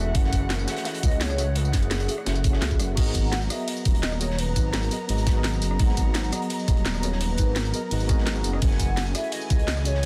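Melancholic and dreamy, this excerpt of liquid drum and bass at 170 BPM sets a hollow, woody clarinet-like synth lead with chorus, 12-bit sampler grit and tape echo behind a worn, slightly out-of-tune tine electric piano with delay and veiled, muted chamber strings holding bowed chords over F#m9 and G#m9, while a deep, rumbling detuned saw bass sits up front with a knocking electronic kick, a bright drum and bass kit with cracking snare, rides, crashes and tambourine, and a gritty, saturated breakbeat kit tucked into the background, all packed into a dense, heavily limited mix with little reverb.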